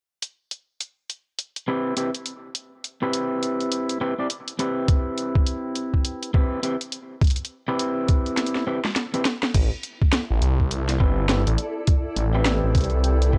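Twangy, slightly broken-up electric guitar stabs, coloured by vintage 12-bit sampler grit, sidechain pumping, a low-pass filter and analog delay, lead this playful glitch hop excerpt over a layered electronic kit with a cracking snare, hi-hat and crash, joined at 4.9 seconds by a thumpy, pitched-down kick. After a drum fill, a thick, swirling detuned saw bass with phaser arrives at 9.5 seconds as the harmony moves from Cmaj7 to Am9, and a bright, blurred granular cloud pad drifts in soon after with its own reverb and pumping. The swung groove sits in a dry hardware sound with a cassette-tape edge.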